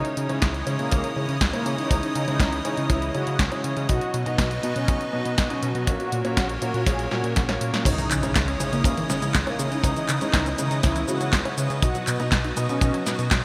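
A straight 4/4 italo disco groove at 121 BPM drives this melodramatic, nostalgic excerpt in C# dorian, built on a dry, tight kick that enters at 0.4 seconds and a punchy, tape-tinged house kit of snare, hi-hat, handclaps, cabasa and crash bathed in gated reverb, under a fat, detuned sawtooth bass. A mellow, brassy synth carries the melody with chorus and delay over a lush, bright unison pad holding sustained chords and warm, vintage grand piano stabs in the background, moving through C#madd9, B and F#/A#. After a drum fill, an electronic impact lands at 7.9 seconds as a very quiet, detuned pluck adds arpeggios, all set in a moderate hall reverb with glossy 1980s-style digital sheen.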